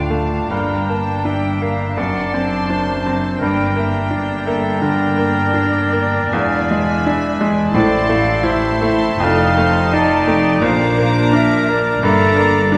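A bright baby grand piano opens this tragic, passionate classical fragment, carrying the melody up front with brilliant, polished tone, short sustain and audible action noise, while a distant, floating violin section also carries the melody high above in the background. At a rubato 83 BPM in 4/4 with uneven beats, a clear solo clarinet, a tongued silver flute with vibrato, and a second rich violin section play second lines, all bowed sul tasto with soft attacks in the strings. Beneath them a viola section supplies gentle, pure accompaniment, and an intimate cello section with light vibrato joins a dark, smooth-topped double bass section on the bass. A mellow, tight French horn section enters at 0.5 seconds with very quiet sustained chords. The harmony moves through a minor-key progression from Dm and Gm through E7, Am, F7 and Bb before settling back on Gm. Wet concert hall reverb lends the whole passage a spacious, mournful glow as it is cut from a longer piece.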